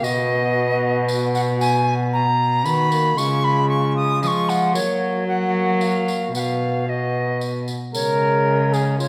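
A straight three-beat pulse at 114 BPM carries this courtly, stately consort dance in renaissance style, heard as a short passage cut from a longer piece. A dark, distant cornet with light vibrato and a soft attack carries the melody, while an airy wooden alto recorder sits up front above it, playing a bright second line with vibrato and lifted highs. A warm, roomy trombone fills in the accompaniment beneath, and a single bowed cello, nasal and reedy with a period gut-string tone, anchors the bass close to the listener. A jingly acoustic tambourine adds a light touch of percussion in the background. All five parts play throughout, with a new section arriving at 7.9 seconds, and a wet recital hall reverb gives the consort a lingering, spacious glow.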